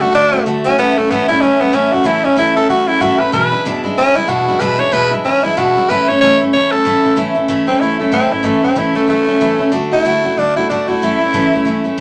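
A short, wet club reverb gives this rock recording the feel of a small, lively room, with both parts placed up front. The mood is rollicking and rowdy, moving at 188 BPM in 4/4 with a swung eighth-note feel, in A major. A raspy tenor saxophone carries the melody, close-miked and gritty, with an edgy pop-style tone, vibrato and scooped notes, and it takes a solo over the opening 7.2 seconds. Beneath it, a picked steel-string dreadnought acoustic guitar supplies bright, full-bodied accompaniment throughout. The harmony moves from D to A and on to E7 before returning to A and D, and the saxophone drops out at 11.8 seconds, leaving the guitar to finish this fragment of a longer piece.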